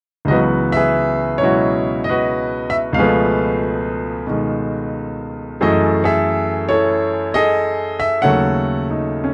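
Late-night and cool, this short excerpt from a longer piece presents solo jazz played on a single grand piano. The piano sounds bright and brilliant, natural in tone and placed up front, spanning from C#2 up to F#5 between 0.2 and 9.3 seconds. The time is in four with a swung eighth-note feel, yet the phrasing moves freely in rubato. The harmony glides through rich minor-key colours, opening on C#m11 before shifting to C#7b13 at 3.0 seconds, then F#m9 and finally D#m7b5. A light reverb surrounds the instrument, while the recording itself feels dry and close, in the manner of a 1970s studio session.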